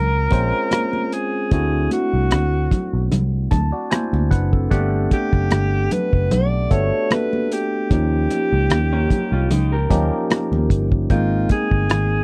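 Bittersweet and smooth, this lush 1970s-style soul excerpt moves at 75 BPM with a light sixteenth-note swing, its alto saxophone carrying the vibrato-laden melody up front over a barky tine electric piano, lightly overdriven and phased, which adds a fill from 3.1 to 4.7 seconds. A round, foam-muted picked bass and a cloth-damped, thuddy drum kit with a tight kick, hi-hat and rim click anchor the groove, while high-tuned congas with a thin skin sit in the background. An old-amp electric guitar, slightly broken-up and lo-fi with harmonic tremolo, slips in for a brief riff at 8.9 seconds, all in a dry, close studio sound as the chords drift from Bbm7 through Gmaj7 and Eb7 to Abmaj7.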